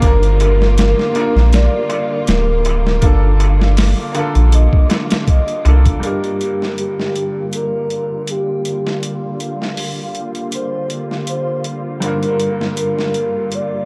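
Trip hop at 80 BPM in G minor, this cinematic, brooding piece is cut from a longer work and rests on a Gm7 chord, with a lightly swung 16th-note feel. A gritty, pitched-down boom bap sampler-style kit sits up front, with a thumpy kick, a high-tuned snare and hi-hats, all overdriven and compressed. A soft, round dub sub bass also sits up front, joined by a crisp metal-shell darbuka, distant and very quiet, and a dark, airy wind-like texture far in the background. At 6.0 seconds the bass, darbuka and texture stop. From that point a filter sweep moves across the lush, bowed string section that holds sustained chords throughout. Above it, a breathy sine lead carries the melody with portamento, vibrato, chorus and tape echo, while a brilliant, woody upright piano with harmonic tremolo plays accompaniment in a small room with a dark production.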